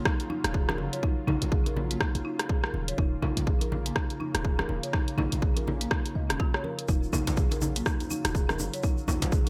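A punchy, tape-warm electronic kick sits up front in this earthy, driving afro house excerpt, joined by a house kit of hi-hat, rim click and toms wrapped in gated reverb, soft-handed ringing congas in the background, and a deep, boomy 808-style bass that pumps against the kick. Above them, a woody folk marimba plays rustic arpeggios through a digital delay while a smooth, detuned analog pad with subtle chorus sustains chords moving from Ebm9 to Bbm/Eb and back. A grainy tube shaker arrives at 6.9 s and a very quiet, deep djembe at 7.1 s, all set in a small room with bright 1980s-style digital production.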